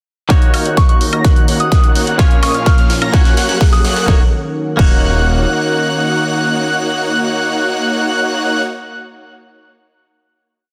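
A punchy, up-front four-on-the-floor kick drives this powerful, anthemic festival progressive house piece at 127 BPM in Eb minor, joined by a big-room kit with a huge snare, hats, woodblock and crash through a build that peaks at 4.1 seconds, while bright pulsing supersaw chords under a low-pass filter sweep, a thick wave-folded unison lead plays arpeggios with vibrato, a very quiet, menacing detuned saw bass locks to the chord rhythm, a warbling vintage pad sustains, a twangy clean electric guitar sits in the background, a pure FM bell adds soft phrases and a riser enters at 2.8 seconds, before the music settles onto a final Ebm7 chord that the guitar holds until 9.0 seconds.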